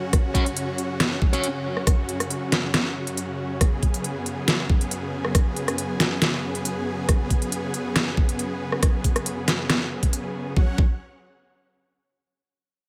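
A huge, detuned supersaw wall sits up front, sustaining bright chords from the first moment with sidechain pumping, while an overdriven, knocking electronic kick drives this aggressive, menacing heavy wobble dubstep at 138 BPM in a half-time 4/4 feel. A layered dubstep kit adds a deep snare, crisp hats and rim clicks with tape-warm small-room ambience, and a sludgy, picked distorted guitar flashes brief stabs soaked in dub echo between 0.3 and 1.4 seconds. Light digital reverb frames this cut from a longer piece, which shifts into a new section at 10.6 seconds as the parts fall away.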